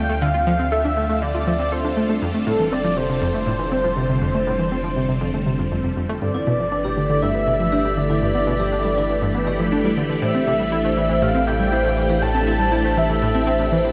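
A breathy, flute-like synth lead sits up front, carrying the melody with chorus and tape echo over a hypnotic, mysterious stretch of sequencer-driven ambient space music in A minor at 120 BPM, cut from a longer piece. A round analog pluck riff with a filter sweep and a swirling, vintage phased string machine of sustained chords share the space, while a deep sine sub bass fades in beneath them along with the strings. At 6.2 s a ringing vibraphone played with soft mallets adds echoing arpeggios, and the chords move from Dmadd9 through F and G to Am7, all bathed in a huge, wet ambient reverb.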